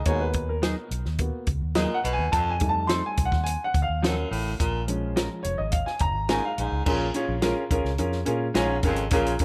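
A straight 4/4 pulse at 106 BPM drives this short, urgent slice of uptempo 1960s-style soul, cut from a longer piece. A compact cocktail drum kit sits up front with a dry, natural sound, a tight kick, a high-tuned snare, and dark hi-hat and crash cymbals. Beneath it, a vintage fingered electric bass is foam-muted, round and punchy. The boxy, woody upright piano carries a passionate solo until 6.9 s, when the music moves into a new section, over chords shifting from Abm7 to F7 to Bbm7. A clear baritone saxophone with vibrato repeats a riff from a distant, roomy position, while a clean, compressed electric guitar adds fingered stabs through a lush chorus from 0.6 s to 8.7 s. Light reverb lends the whole a gentle sense of space.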